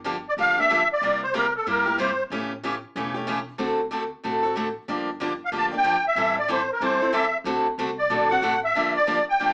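Heard through a small-speaker sound soaked in wet studio reverb, this fiery, swinging jazz manouche snippet sets a bright, picked steel-string acoustic guitar up front for accompaniment, a woody pizzicato upright bass on gut strings thumping in the background until 8.7 seconds, and a reedy, shimmering musette accordion leading the melody in two phrases, the second entering at 5.5 seconds.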